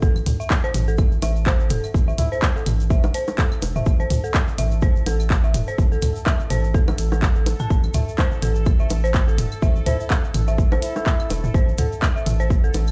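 A swung 125 BPM groove drives this hypnotic, quirky minimal techno excerpt in A minor, where a punchy, up-front layered kick and a round, deep, sidechain-pumped analog bass anchor a clicky kit of handclaps and hi-hat, overdriven electronic claves, toms and bongos with digital delay, and a grainy tube shaker in the background, while an eerie, inharmonic detuned FM synth bell riff with chorus, tremolo and delay shimmers over a bubbling, resonant stepped-filter texture, and a veiled, distant bucket-muted trumpet drifts in briefly at 2.2 seconds and again from 9.9 seconds.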